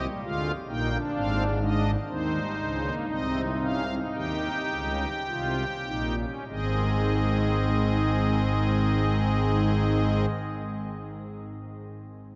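A solo pipe organ on its shimmering strings celeste stops opens this lively yet stately excerpt of a baroque-style four-part fugue in Ab major, its soft, romantic voicing sitting up front across a range from Ab1 to G5 and moving through Bb7, Ab and Eb7 harmonies at a 4/4 pulse of 47 to 68 BPM that slows through the first 6.5 seconds before arriving on Ab, the organ stopping at 10.3 seconds as a drenched cathedral reverb with a 7.3-second decay carries the sound.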